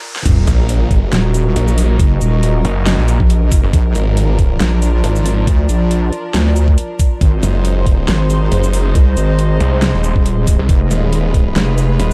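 A dark, dry mix opens this fragment of aggressive, menacing half-time wobble dubstep at 138 BPM in Eb harmonic minor, as a background riser and sub drop lead into a drop at 0.3 seconds that moves through Ebm, Bb, Ab and Fdim. A knocking, up-front electronic kick and a layered kit with a huge snare, metallic hats and shaker sit beneath two heavy basses: a detuned square-wave wobble bass with chorus and overdrive, and a snarling, growling sawtooth bass with a moving notch and bright distortion. Behind them, a distant, biting symphonic string section with light vibrato and a warbling, nostalgic lo-fi pad with chorus and reverb both pump against the sidechain.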